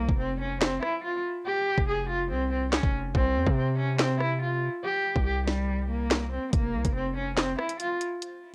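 Dry, cassette-recorded home sound frames this dark, ominous drill hip hop excerpt at 142 BPM in a half-time feel, where a nasal, boxy bowed cello with vibrato carries the melody through a low-pass filter, cassette tape coloring and tape echo over an F5 to C5 and back to F5 progression, a punchy, heavy 808-style bass with a sine body and noise layer anchors the low end, and an up-front electronic drum kit with a knocking kick, sharp snare, tape-warm hi-hats, rim clicks and handclaps drives the groove.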